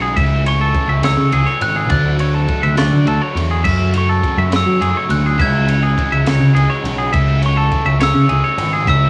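A growling, overdriven electric bass sits up front in this playful, intricate slice of math rock and midwest emo, its bright, direct-and-amped tone carrying the low end from the first moment. Above it, a clean, twangy electric guitar picks compressed arpeggios, while a double-tracked, overdriven second guitar drives a gritty riff in the lower register. A glockenspiel played with soft plastic mallets enters at 0.5 seconds with a ringing, bell-like melody sitting mid-forward in the mix, trailed by tape echo. A compact cocktail drum kit, dry and acoustic, with a high-tuned snare, punchy kick and dark crash and ride cymbals, keeps a steady 6/8 pulse. The harmony moves through Amaj7/C#, Dmaj7 and C#m7 before returning to Amaj7, and the guitars and drums carry the character of a home cassette recording in a small room, in a short passage cut from a longer piece.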